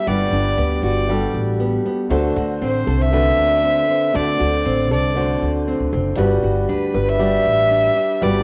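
A homey cassette sound and a moderate spring reverb frame this sunny, easy-going pop clip in G major, moving at 118 BPM in a straight 4/4 over Gmaj7, D7 and back to Gmaj7 at 6.2 seconds. Up front, a single warm violin carries the melody with a soft, airy sul tasto bow and light vibrato, while a clear, vintage upright piano with long sustain and a bright, fingerpicked nylon-string guitar fill in the accompaniment. From 0.1 seconds a growly, woody pizzicato upright bass sits close in the mix, underpinning the tune until the cut at 8.4 seconds.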